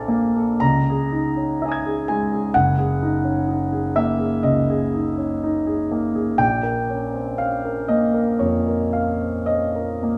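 The recording places a clear, open concert grand up front, carried by a moderate scoring-stage reverb that lends the sound a luminous halo. This is impressionist classical solo piano, dreamy in mood, moving at an unhurried pace in four with a freely breathing rubato feel. The single piano plays throughout the 10.2-second fragment, cut from a longer piece, spanning from a deep bass at F#1 up to A6. The harmony drifts through lush colours: A#maj7 opens, C#madd9 follows at 0.6 seconds, F#69 settles in at 2.5 seconds, and A#m6 arrives at 6.4 seconds. The result is a suspended, floating passage where rich low tones and bright upper registers blend into a shimmering wash.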